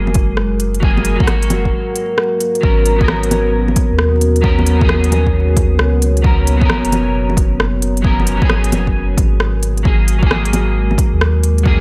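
Swung sixteenth-note grooves drive this rainy, melancholic future garage excerpt, where a punchy, overdriven electronic kick and a crisp, gritty kit of bongos, hi-hat and rim click sit in a small room from 0.1 seconds, under a round sine sub bass, a moody sawtooth pad with chorus, phaser and 12-bit sampler grit, and clean picked electric guitar with chorus and delay, all three pumping against the beat, as a brief break from 1.7 to 2.6 seconds gives way to a minor-eleventh chord amid light reverb and vinyl crackle.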